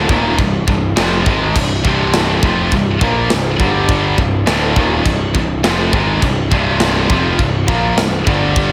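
Heavy metal in C minor at 103 BPM, this relentless, heavy cut from a longer piece stacks three bright, picked distorted guitars on a riff over Cm, moving briefly to G5 at 3.6 seconds before returning. One high-gain guitar sits in the background and a double-tracked one stays very quiet, while a growly, fuzz-laden picked bass digs low beneath them. An up-front, mid-forward acoustic kit with a tight kick, medium-tuned snare, crash and china enters at 0.1 seconds, all framed by a lush hall reverb that gives a big arena sound.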